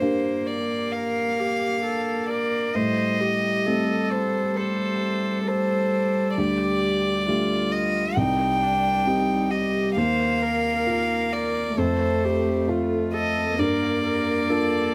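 Neoclassical piano and strings in G minor, this fragile, longing fragment moves at a rubato 66 BPM in 4/4 and is cut from a longer piece. A solo violin carries the melody up front, its sul tasto tone pure and floating with an airy bow, while a single cello sings a second line beneath, smooth on top and softly attacked. A felt-muted upright piano supplies the accompaniment, mellow and intimate, with the action noise of its mechanism audible. A viola joins the accompaniment at 0.9 seconds, played close and sul tasto with light vibrato. The harmony drifts from Gm through Am7b5, Dsus4, Cm, Ebsus2 and F before settling on Gm7 at 13.6 seconds, all framed in light reverb.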